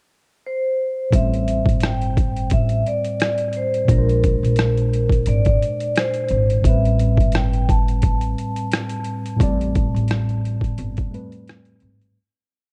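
A gritty, overdriven boom bap drum kit sits up front in this hazy, reflective lo-fi hip hop piece in A minor at 87 BPM, its compressed, pitched-down sampler sound pairing a thumpy kick and rim click with sixteenth-note hi-hats in a laid-back, lightly swung 4/4 beat. A vibraphone with medium hard mallets opens the track at 0.5 s in a short pickup bar, its metallic, ringing tone softened by a low-pass filter and a slow motor vibrato as it spins a smooth, free melody. At 1.1 s the drums, a woody pizzicato upright bass and a mellow tine electric piano join together. The bass plays a sparse line with slides and chromatic approach notes, while the clean, low-pass-filtered electric piano holds spread-voiced chords with grace notes, repeated like a sampled loop over Am7, Bb9 and Am9. Light studio reverb and a dark, warm production give the short piece a dusky glow before it fades out from 9.4 s.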